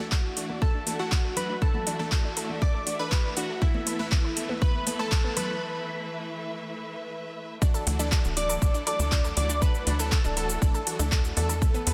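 Dense, heavily limited and lightly reverberant, this euphoric, hopeful progressive house excerpt at 120 BPM in D major sets a catchy, detuned plucky unison lead over a crystalline wavetable pluck, a round analog pluck arpeggio, sawtooth supersaw stabs and lush, distant strings, with the plucks, stabs and strings pumping against a punchy, up-front electronic kick and a house kit of handclaps, metallic hi-hats and shaker, while background congas play until 5.5 s and a nasal, tight sequencer bass drives the drop from 7.9 s.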